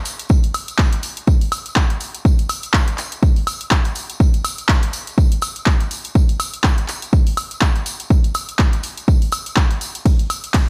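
House groove at 123 BPM with a 57% sixteenth-note swing and a bittersweet, soulful mood, cut from a longer piece, where a dry, up-front analog drum machine of handclaps, hi-hat, ride cymbal and woodblock is joined at 0.3 s by a layered, punchy electronic kick, both driven with overdrive, while a small-room tambourine sits in the background.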